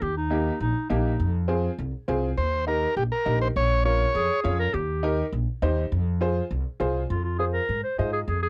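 Fiery and passionate, this short latin excerpt rides on a growly, woody pizzicato upright bass and a clear, slightly detuned upright piano, both up front in a dry, close 1970s-style studio sound with light reverb. An overdriven, reedy combo organ with light vibrato carries the melody from 2.4 to 4.4 seconds. A breathy, subtone clarinet with a soft attack plays a second line before taking a jazz-style solo at 7.1 seconds.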